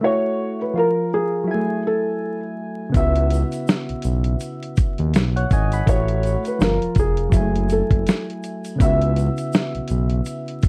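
A lazy, swung sixteenth-note groove in 4/4 gives this melancholic, nostalgic lo-fi hip hop excerpt its loose, unhurried sway. It opens with a felt-muted upright piano carrying a soft, intimate melody, its thick felt and audible action noise close at hand under a plate reverb, over round, gentle electric-piano-like synth keys whose chorus and evolving filter sweep shade the jazzy extended chords. At 2.9 seconds a dusty, sampler-style drum kit arrives up front, compressed and gritty, with a thumpy kick, a medium-tuned snare and hi-hat, joined by a smooth gliding synth bass that slides between its sustained, mellow low notes. From 3.0 seconds a grainy, bright tube shaker sits faintly in the background. The production is dark and warm, with light reverb and vinyl crackle lending a worn, intimate patina.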